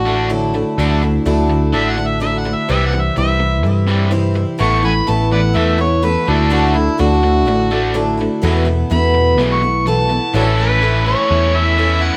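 An overdriven harmonica leads a short excerpt of folk rock and heartland rock, its gritty, amplified tone sitting up front from the first second, with light vibrato and tongue slaps, and a plate reverb and analog delay trailing behind. The mood is nostalgic, moving in a straight 4/4 at 126 BPM as the chords pass from Dadd9 through C, Asus2, Dadd9 again and Esus4 before landing on A at 10.3 seconds, where the harmonica solo gives way to a new section. Underneath, a picked twelve-string acoustic guitar shimmers with an octave-doubled, boxy archtop sound, while a double-tracked semi-hollow electric guitar plays a bright, overdriven riff in the same low-to-middle register. A picked electric bass is punchy and amped, standing forward in the mix, and a dark baby grand piano stays in the background with a mellow, intimate touch, short sustain and audible action noise. The whole thing has the rough feel of a home demo, set in a wet studio reverb.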